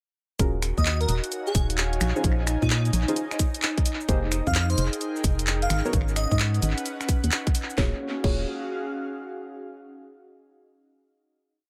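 A soulful, late-night two-step UK garage piece in Eb minor at 130 BPM opens at 0.4 seconds with a tight, up-front kick, a swung kit of cracking snare, hats, claps, snaps, shaker and crash carrying tape echo, a hollow, organ-like FM bass in a skipping syncopated line, sparse, deep, nasal chord stabs trailing dub echo and a breathy, ring-modulated pad, soon joined by an airy, dreamy lead with vibrato in short phrases and an ethereal background pad holding a high note from 1.2 seconds, moving through Ebm11, Bbm11, Fm11 and Abm11 in an echo-heavy mix until the breathy pad sustains the closing Ebm11 chord alone after 8.5 seconds.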